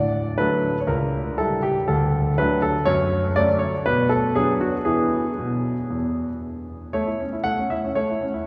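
A clear, smooth concert grand piano, up front with a deep bass and a vintage character, plays alone throughout this graceful, playful classical-period sonatina in A major at 119 BPM in a straight 4/4, tuned to A4 = 437 Hz and ranging from C#2 to F#5, moving through D, C#dim7, F#m, Bm and E before arriving on A at 6.9 seconds, all bathed in a long, wet cathedral reverb of a church or concert hall, in a short passage cut from a longer piece.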